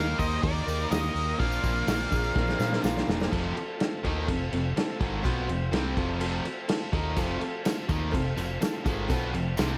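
Confident and swaggering, this classic rock passage in straight 4/4 is cut from a longer piece and moves from Eb through Bbadd9 before settling on F. A dark octave-fuzz lead guitar carries the melody with slapback echo, shadowed in the background by an overdriven, nasal second guitar with a parked wah, and both fall away at 2.8 s. An electric slide guitar, slightly broken-up and played with fingerpicks, slips in at 2.1 s with its own slapback echo. Underneath, three picked, distorted rhythm guitars drive the riff, one compressed and scooped, another tight and double-tracked, while a round, punchy hollow-body short-scale bass anchors the low end. A brilliant grand piano sits in the background, a very quiet tonewheel organ adds shouting, key-click chords through a slow rotary speaker, and a jingly, close tambourine rides along. The vintage drum kit sits up front with a muffled, lo-fi character, a punchy kick and a rolled-off top, and it plays a fill at 2.4 s, all within a small room ambience.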